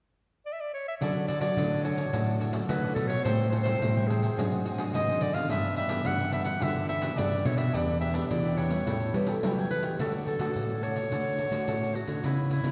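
A lively, festive samba and choro piece at 107 BPM in D major, heard as a short cut from a longer performance. A clear, up-front clarinet carries the melody in a classical style, entering alone at 0.5 seconds before the band joins at 1.0 seconds. Beneath it, a bright, crisp picked cavaquinho accompanies alongside a fingerpicked nylon-string guitar with fresh strings that sits in the background, while a second nylon-string guitar plays the bass line with audible finger squeak and a jingly pandeiro drives the rhythm. A mellow vibraphone with soft mallets and slow motor vibrato adds a brief, airy second line from 9.1 to 10.0 seconds. The harmony moves from Dmaj9 through Am7, G#7#11, G6, Em7 and A7 before settling on Dmaj7, all bathed in the long, wet reverb of a church or concert hall.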